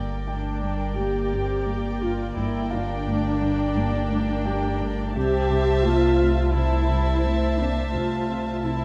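A dark, warm mix sits in a moderate scoring-stage reverb for this uneasy, tense excerpt of suspense film score in G dorian at 86 BPM, opening on a shared accent at 0.0 s and shifting from Gm to C6 at 5.2 s. High chamber violins carry an intimate sul tasto melody over a woody second violin line, while a lush, up-front symphonic viola section enters at 0.3 s with dark accompaniment alongside a clear baby grand piano texture in the background, its action noise audible. Underneath, one cello section repeats a low riff and another plays a bass line above a pure, floating double bass section, all resting on a deep, punchy sine sub-bass drone with a pitch-drop attack.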